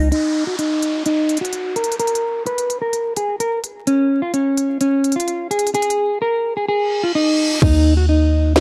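A half-time 4/4 trap beat at 128 BPM anchors this brooding, hard-hitting hip hop excerpt in Eb minor, where a dark, clean, fingered electric guitar carries the melody up front through a low-pass filter sweep, electronic drums punch with a hard-clipped kick, sharp snare and crisp hats, and a downlifter and reverse cymbal sit faintly behind; at 7.6 seconds the hi-hats fall silent as a deep, boomy 808-style bass with a sine body and noise layer lands on an Eb5 chord, the whole recording dry and gritty with vinyl crackle.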